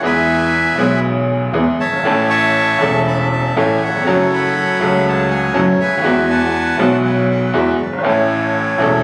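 A rubato 4/4 pulse at 120 BPM gives this nine-second tango fragment in A major, cut from a longer piece, an elegant and playful sway. A reedy bandoneon carries the melody, close-miked, dry and up front, reaching from E4 to C#6. A bright upright piano supplies the accompaniment with a brilliant, woody, polished tone that sits forward in the mix. Beneath them, a single bowed double bass plays smooth, even lines with vibrato, sounding somewhat distant. The harmony moves through E, A, F#m and Eadd9 before settling on A at 8.0 seconds. The whole was captured on a phone in the room, with moderate large-studio reverb, club ambience and compression.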